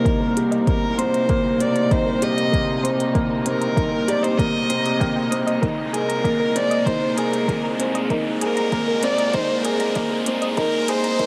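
A dark, warm production bathed in a huge ambient reverb frames this melancholic, hypnotic piano and strings electronica excerpt in C minor at 97 BPM, building from start to finish as a filter sweeps and a riser climbs from 0.4 seconds over a move from Cm7 to Abadd9/C. Up front, a felt-muted upright piano with audible action noise repeats a mellow riff through a digital delay. Beside it, a rich, smooth violin sings the melody with vibrato, while a nasal, reedy chamber string section holds sustained chords in the background, a very quiet cello section bows a distant low C bass, and a soft, round pluck traces gentle arpeggios over a punchy, layered electronic kick and clicky, overdriven hi-hats.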